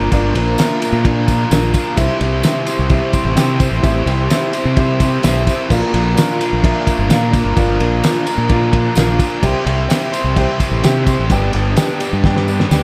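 A double-tracked, overdriven electric guitar riff leads this swaggering, sunny classic rock excerpt at 129 BPM, backed by a growling, bright overdriven fingered bass, a cloth-damped, thuddy drum kit with a fat snare and gritty, muffled tone, a dark, boxy concert grand piano, very quiet lush string machine chords, and a jingly tambourine in the background, moving through Bb, C and G before a drum fill at 12.2 seconds.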